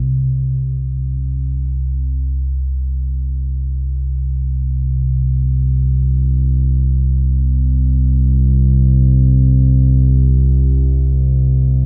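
A deep, rumbling drone plays alone and up front from 0.0 to 11.9 s in this dark, ominous ambient fragment of a longer piece, its warbling, wave-folded vintage tone entering on a slow attack and sustaining with a long release across C2 to C3 in free time, wrapped in its own built-in reverb and a moderate cathedral space with an RT60 of 5.1 s.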